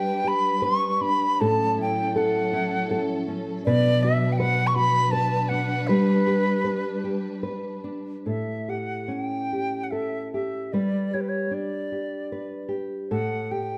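Heard through a moderate recital-hall reverb, this pastoral, tender Celtic slow air in A mixolydian moves in a rubato 3/4 at roughly 71-82 BPM, cut from a longer piece. An airy wooden flute sits up front, carrying the expressive, tongued melody with vibrato, while a nylon-string guitar gives thumb-plucked classical accompaniment through chords such as G, A6 and Bm. A dark, lush bowed string section holds sustained chords beneath them until 8.2 s, leaving flute and guitar to finish the passage over A7 and G.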